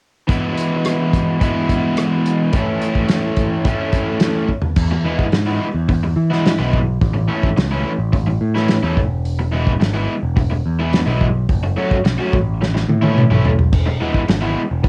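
Upbeat, jangly indie rock cut from a longer piece, where a bright, double-tracked overdriven guitar riff and a loose, cassette-toned drum kit with a fat snare and rolled-off top drive from the start over E and A, a drum fill at 4.5 seconds brings in a growling, overdriven picked bass, and a longer fill near 12.6 seconds leads back to E in a dry, up-front home recording.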